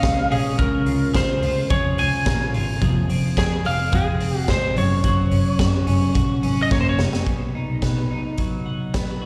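A straight 4/4 pulse at 108 BPM drives this nostalgic, youthful stretch of jangly indie pop, cut from a longer piece and set in a light small-room ambience that sounds like a live gig heard through the venue's PA, carried by recital hall reverb. The raw garage drum kit sits up front with a punchy kick, a high-tuned snare and hi-hat, its gritty, saturated tone pumping in a stone room, and a drum fill arrives at 6.7 seconds. Beneath it, a single bowed double bass plays a woody, close bass line with vibrato. The twelve-string electric guitar is twangy and clean, its compressed arpeggios shimmering through lush chorus and digital delay. Above them, a lightly driven lead guitar carries the melody in a dark, slightly broken-up voice with slapback echo and digital delay, stopping at 7.0 seconds as the harmony moves through Bbm7, Db6, Fm and Gb before settling on Cb at 7.3 seconds.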